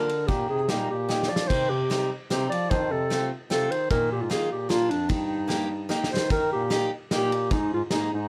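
Alpine folk dance-band music in a festive, bouncy triple metre, with a mellow, up-front clarinet carrying the melody in plate reverb over a clear euphonium second line, a bright, boxy picked steel-string acoustic guitar with audible finger squeak, and a roomy, distant-sounding drum kit with dark cymbals and a punchy kick that plays fills at 1.1 and 5.9 seconds.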